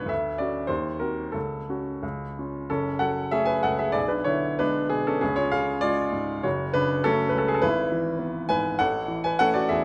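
Bittersweet and passionate, this short passage from a longer romantic character piece for solo piano moves in a flexible rubato two-beat metre, its harmony sliding through rich, yearning chords before a new section begins at 2.7 seconds. The baby grand sounds clear, polished and up front, ranging from deep bass notes to bright upper-register lines. A moderate recital hall reverb gives the playing a natural sense of space.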